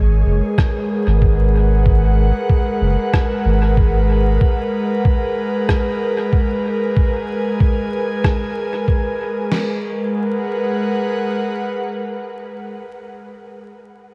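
A lightly swung 94 BPM groove in 4/4 drives this deep, spacious ambient dub fragment in G# minor: a muffled, pitched-down sampler-style drum kit with a thumpy kick, a medium-tuned snare and crash cymbal sits up front from 0.6 s beside a faint, tape-toned electronic rim click soaked in dub echo, a round, nasal analog bass holds the low end until 4.4 s, and an airy, breathy, detuned pad with chorus sustains a G#m7 chord through 12.8 s amid light reverb and vinyl crackle.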